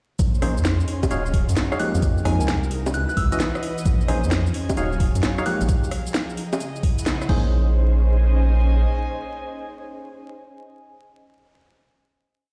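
Swung, skipping two-step garage drums, with a knocking, tape-warm kick and a kit of cracking snare, metallic hats, rims, bongos, shaker and crash, drive this moody, soulful piece under a rubbery, saturated square bass line, syncopated organ stabs with tape echo, short phrases on a pure FM bell, and a silky string machine and airy, breathy pad pumping beneath, all in a big reverberant room with vinyl crackle, before the drums drop out at 7.4 seconds and the pad rings on in a final chord to 10.7 seconds.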